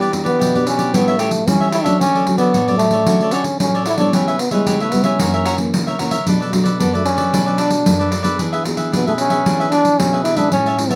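A breathy trombone carries the melody in a mellow, whispered jazz style, its soft attack giving the line an intimate, roomy quality as it sits up front in the mix. This joyful, playful samba and choro passage moves at 113 BPM in a straight 4/4 feel, tuned to A4 = 439 Hz, and is cut from a longer piece. A bright, crisp cavaquinho picks out the accompaniment above the trombone, while a thumb-plucked nylon-string guitar adds a full-bodied, deep classical foundation with the sound of fresh strings. The pandeiro keeps a jingly pulse, played with soft hands and heard in a large room. All four parts play together throughout the 11 seconds, moving through a harmony of Em7, A7, Dmaj7, C#m7b5, F#7, Bm7 and E7. Close, detailed microphones and light reverb give the recording clarity with a touch of space.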